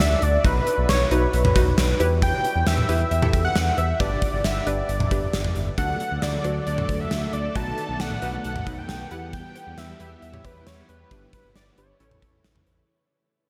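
Synth-pop at 135 BPM in a straight 4/4, this excerpt feels melancholic yet driving, its harmony moving from B through Em, G and D to B7 before closing on G6 and A. A thick, bold unison lead carries the melody up front, its detuned sawtooth tone sustained with vibrato and trailed by a diffuse ambient delay. Beneath it, a round analog pluck with a noise layer and chorus supplies decaying accompaniment, while a smooth, dark synth bass glides between notes with portamento and vibrato. A gated 80s kit punches through with a tight kick, medium-tuned snare, toms, hi-hat and cowbell in a bright stone room, sitting polished and up front. At 5.8 seconds a vintage, warbling string machine of violas enters in the background with soft-attack sustained chords and ensemble chorus, and the whole mix is soaked in huge, dreamy reverb as a long fade-out begins at 1.5 seconds and runs to 12.9 seconds.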